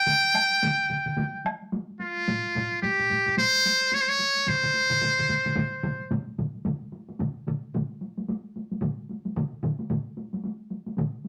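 Powerful and driving, this short cut from a longer Japanese traditional taiko piece moves at 110 BPM in 4/4 with a swung sixteenth-note feel, gathering speed from start to finish. A trumpet with a metal mute leads the melody up front from the opening, its tone brilliant, buzzy and thin, with light vibrato, scooped notes, a smooth top and a punchy pop-style delivery, ranging from F4 to G5 before it stops at 6.1 seconds. Beneath it, solo taiko drums struck with heavy sticks sound close and acoustic, joined by a taiko ensemble, also on heavy sticks, that carries a small-room character. A second taiko ensemble enters at 2.3 seconds, played with hard sticks in a close, dry sound. After the trumpet drops out, the drums carry the second section alone through to the end at 11.3 seconds, set in a moderate studio reverb.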